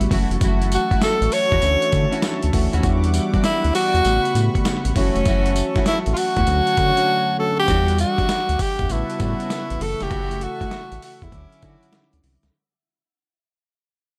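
Swung sixteenths at 99 BPM drive this confident, punchy new jack swing R&B piece, where a gritty, overdriven sampler-style drum kit of hi-hat, thumpy kick, medium-tuned snare and tambourine with gated reverb sits up front beside a round, deep analog bass, while a breathy jazz-style tenor saxophone carries the melody over a bell-like tine electric piano with analog chorus, a brassy detuned pad and lush bowed string stabs in the background, cycling through F#m7, Dmaj9, Em9 and A13 before a brief silence at 7.1 seconds and a fade-out from 7.7 seconds.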